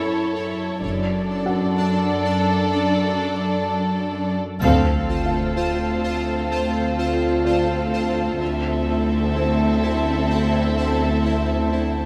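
Mysterious and eerie, this cinematic suspense cue, cut from a longer piece, moves at 95 BPM in 3/4, with two dark, sul tasto violin section lines drifting over a pure, floating cello section bass, a tempo-synced pulsing gated texture of sustained chords with chorus, and a very quiet felt-muted upright piano whose audible action noise adds intimacy. At 4.6 s the music settles into D minor with an accent and impact: a huge sub drop lands in the background, a triangle glints briefly, the warm double bass section returns after a fleeting early appearance, and a rich viola section adds soft, close accompaniment beneath. A moderate scoring stage reverb surrounds the ensemble, while the melody violins sound lush and distant.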